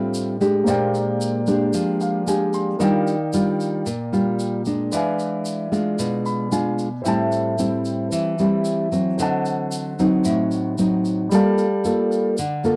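Bossa nova in D minor at 113 BPM, relaxed and breezy, where an up-front, thumb-plucked nylon-string guitar with a deep classical tone carries the accompaniment alongside a dark concert grand piano of mellow, long-sustaining resonance that adds fills around 1.7 and 6.0 seconds, while a grainy tube shaker sits low in the blend, all captured in a dry, close 1970s-style studio sound with a touch of booth ambience over rich chords such as Dm11, Ebmaj9 and E7b9.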